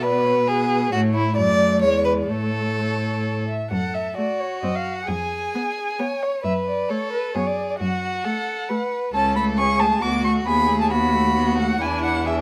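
A string quartet opens together at the very start of this spirited, lively classical-period movement, played quickly at 133 BPM in a straight 3/4 and cut from a longer piece. The first violin carries the melody high above the ensemble with a warm, expressive tone, singing vibrato, gliding portamento and a smooth top end. Beneath it the second violin plays a close, up-front second line, rich and even, while the viola fills in the accompaniment with a soft attack and its own sliding, expressive phrasing. The cello anchors the bass with an intense, sonorous sound that also sits prominently forward. The music begins in A major and turns to F# minor at 3.7 s, moving through darker harmony before settling on an E7 chord at 11.8 s, all set in a light reverb.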